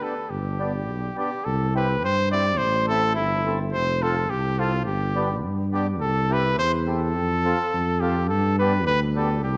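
Jolly and festive, this short cut from a longer alpine folk dance-band piece in C major moves at 105 BPM in a straight 2/4, with a clear, lightly vibrato-tinged trumpet carrying the melody up front while a reedy, airy accordion fills in the accompaniment and a close-miked, mellow tuba enters at 0.3 seconds to anchor the bass, all set in a dark production with a moderate recital-hall reverb as the harmony cycles through G, C, A minor and F.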